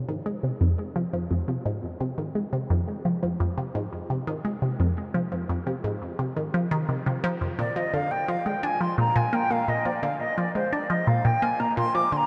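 A vast, echoing space with a huge, drenched reverb frames this short ambient excerpt in F dorian at 86 BPM, its mood cosmic and mysterious. A squelchy, resonant blip pluck with phaser and analog delay plays an up-front riff over Fm from the start, and at 7.6 s the harmony moves to Bb as a bright, airy wooden flute enters with a vibrato-laden, tongued melody, also carried by analog delay, until the piece is cut off at 12.3 s.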